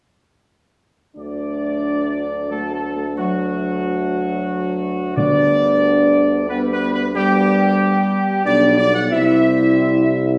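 Majestic and triumphant, this short classical brass passage in D mixolydian moves at 91 BPM in a straight 3/4. A dark trumpet section sits up front with the melody, its tone smooth on top, while a mellow French horn section and a warm trombone section with light vibrato hold sustained chords, the trombones tucked into the background. A solo tuba with a vintage character and its own light vibrato anchors the bass, and the brass enters together at 1.2 seconds. Timpani played with soft mallets add a round, close and dry tone on D3 between 5.2 and 6.1 seconds, as the harmony moves from D to G over D before settling on C at 9.1 seconds. The brass is heard from further back in a wet stone room, giving the passage a spacious, ceremonial glow.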